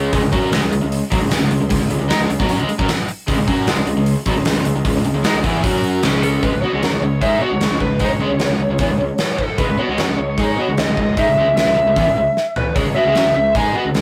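A straight, driving 4/4 pulse from a punchy, up-front gated 80s drum kit, with its airy stone-room snare and toms, anchors this heavy hard rock passage cut from a longer piece. A bright cranked stack guitar and a hollow-bodied semi-hollow guitar set further back play the overdriven riff over a growly fuzz bass, and a lo-fi lead guitar through a small cranked amp takes the melody from 6.2 seconds. A drum fill at 12.4 seconds marks the close, all captured in a rough rehearsal-room recording with light reverb and saturation.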